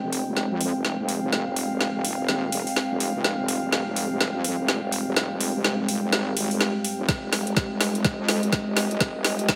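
A saturated, detuned wobble bass drives this gritty, bouncy bass house excerpt in F minor at 125 BPM, swung on the 16ths and pumping under sidechain compression while a garage kit of woody snare and metallic hats sits up front with overdrive. An airy, breathy pad and a moody, wave-folded ambient pad with built-in reverb hold sustained chords on Fmadd9, the darker pad carrying a filter sweep through a build-up with a drum fill. A knocking, overdriven electronic kick joins at 7.1 seconds, in a light digital ambience.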